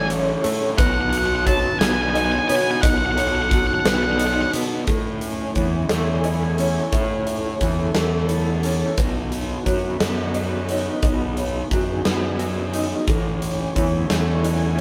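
A live band plays together in one room under moderate studio reverb, giving this hopeful, soaring post-rock passage in A lydian a roomy, full feel at 59 BPM in 6/8, cut from a longer piece. A dark, octave-fuzz lead guitar carries the melody up front until 4.5 seconds, while a punchy arena drum kit with a pumping hall sound and a round, overdriven fingered bass drive the low end. Beneath them, a slightly broken-up, lo-fi electric guitar through a small old amp picks tremolo arpeggios, a thick-felted upright piano murmurs soft, intimate arpeggios in the background, and an evolving sawtooth pad with chorus, a filter swell and a slow attack sustains chords moving through A, B and Amaj7.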